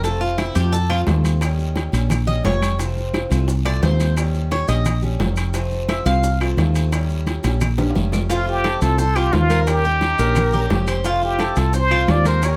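A Cuban tres leads from the opening, playing metallic, double-strung arpeggios over a danceable, warm groove in the son and guajira style, moving briskly at 174 BPM in F major as the harmony alternates between F and Eb7. A dark, round fretless electric bass sits up front with a hollow-body tone, while a bright, boxy archtop guitar picks a quiet accompaniment, its finger squeaks audible under close, detailed microphones. The percussion bed mixes soft-handed, damped congas, low-tuned bongos, ringing metal-shell timbales, woody claves, and a raspy guiro and grainy maracas tucked in the background. A drum fill closes the tres solo, and at 8.3 seconds a forceful, plunger-muted trumpet takes the melody up front with jazz-style wah-wah and vibrato. Between 10.0 and 11.0 seconds a lush, distant violin section briefly adds a smooth bowed second line behind it, all in a dry, intimate sound cut from a longer piece.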